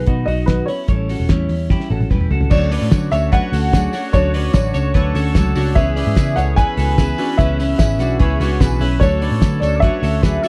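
Bittersweet and restless, this jangly indie pop passage at 148 BPM, cut from a longer piece, sets a dark, worn upright piano melody with slapback echo over picked acoustic guitar, a bright twangy twelve-string electric guitar playing arpeggios, a round foam-muted vintage bass and a cloth-damped, thuddy drum kit with a fat snare sitting up front. After a drum fill from 1.7 to 2.5 seconds, a distant trumpet with scooped notes adds a second line, entering alongside detuned analog keys with chorus and a jingly tambourine in the background. The dry, close 1970s-style studio sound moves from B and A7 into Dmaj7 and C#m7.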